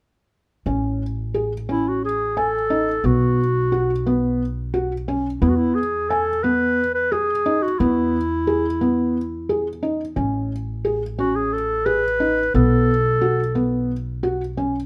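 A felt-muted upright piano opens at 0.7 s with dark, intimate arpeggios, its thick felt and audible action noise sitting up front beside a woody pizzicato upright bass in this hopeful, playful contemporary instrumental in 7/8. A warm, classical-style solo clarinet carries the melody from 1.7 s, moving over a progression that circles from Amaj7 through B5 to E. Close, detailed microphones and light reverb keep the fragment, cut from a longer piece, natural and intimate.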